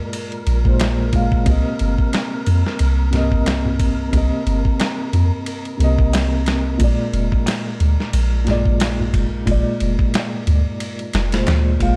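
A dark, dry and intimate production frames this melancholic trip hop excerpt at 90 BPM, with a lightly swung 16th-note feel. A felt-muted upright piano sits up front with audible action noise, tremolo and tape echo, moving between Bb7 and Cm7 over a breathy, wind-like tuned noise layer held in the background. Gritty, compressed sampler-style drums with a thumpy kick, snare and ride enter at 0.1 seconds, a soft, round 808-style bass joins at 0.5 seconds, and a deep clay darbuka played with soft hands sits low in the mix from 0.8 seconds.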